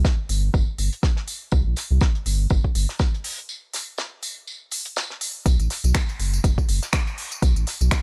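A deep, up-front sub bass with octave, a layered electronic kick and a dry, damped 70s kit of fat snare, hi-hat and tambourine open this late-night deep house excerpt at 122 BPM, the bass pumping against the kick with a full, sine-like weight. From 0.3 seconds, a smooth electronic kit adds finger snaps, hi-hat and tambourine, all riding a light 16th-note swing in a small room. A break runs from 3.5 to 5.5 seconds within the single section, and the rolled-off top of the acoustic kit keeps the groove warm.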